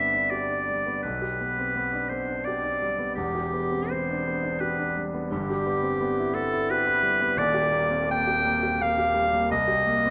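Classical romantic duo for clarinet and grand piano, this short excerpt cut from a longer piece carries a yearning, melancholic mood in a flexible 3/4 at about 85 BPM, its beats uneven and shaped with rubato. The bright clarinet sings the melody up front between G4 and G5, with a vintage, classical-style solo voice. Beneath it, the concert grand piano supplies accompaniment reaching down to Eb1, intimate and polished, with deep bass, long sustain and audible action noise. The harmony moves from G through G/B and Em7 to Em/G, then shifts to Ebmaj7 at 7.4 seconds before settling on Cm7. A moderate concert hall reverb gives both instruments a sense of space around their close, present sound.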